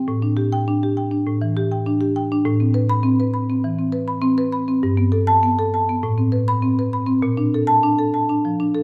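A lush recital-hall reverb surrounds this short fragment of a contemporary classical piece for solo marimba, which sounds flowing and hypnotic in a loose, rubato 4/4. The marimba, played with medium mallets, sits up front with a woody rosewood tone, ranging from low to bright upper registers as it drifts through rich minor-leaning harmonies. Near the end, at 7.2 seconds, it shifts to a Bbmaj7 chord.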